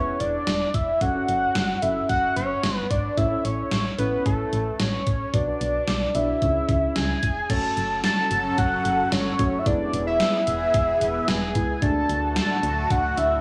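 A fat analog lead sits up front and carries the melody from the start, its sawtooth-and-square tone rounded by a sub octave, a mellow filter sweep and vibrato. This cool, driving synth-pop excerpt moves at 111 BPM in a straight 4/4 in F# minor, with the chords stepping through E, F#m, A, Bm and C#m before settling on F#m, E and D. Beneath the lead, muted, felt-like synth keys add soft, intimate accompaniment with a chorus shimmer and fall away at 12.5 seconds, while a punchy, round FM bass anchors the low end with dark, decaying notes. An up-front 80s digital drum machine drives the groove with a thumpy kick, hi-hat, crash cymbal and a snare drenched in gated reverb. At 7.5 seconds a lush, thick unison pad of detuned saws enters with slow-blooming sustained chords, bright and swirling under chorus and phaser, while a moderate hall reverb lends the whole mix a spacious sheen.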